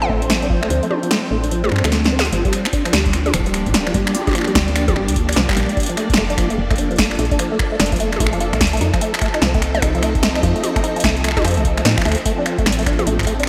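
Up front and overdriven, an electro analog drum machine with a punchy snare, metallic hats, finger snaps and toms drives this eerie, intricate IDM excerpt in G minor at a swung 148 BPM, joined by a deep overdriven kick that drops out from 0.7 to 2.3 seconds around a drum fill, a woody, round FM bass, rubbery resonant acid-bass arpeggios with chorus and delay, and silky string-machine chords with phaser, all moving from Dm7 through Gm7, Bbmaj7 and F7 in a lush hall with bright 1980s-style digital production.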